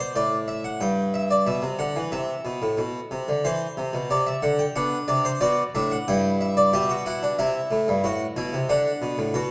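A wet recital-hall reverb, about 1.7 seconds long, surrounds a solo harpsichord placed up front, its French-style tone full and plucked from two sets of strings. This classical, baroque-style three-part fugue in straight 4/4 feels driving yet contemplative, with the harpsichord spanning G2 to G5 across the short 9.5-second passage cut from a longer piece. The harmony moves from Bm through G and C to a colourful Cmaj9#11, returns to Bm, then goes on through Em/G and Am to D.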